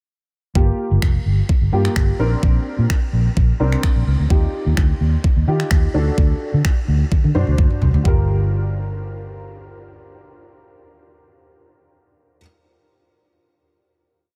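At 0.6 s, a bittersweet, driving dance-pop piece in G minor at 128 BPM opens with an overdriven pop kit pounding a four-on-the-floor beat with a knocking kick and finger snaps, while a round, foam-muted vintage electric bass plays a syncopated line with chromatic approach notes and pumps against the kick. Behind them, a quieter, dark baby grand piano with audible action noise and short sustain pushes close-voiced chords through an analog chorus, also pumping, across a Gm7, Bbadd9, Ebadd9 and D progression. A tom-laden drum fill from 7.1 s ends the drums at 8.2 s, and the bass and piano then hold a final Gm7 in a dry, intimate space.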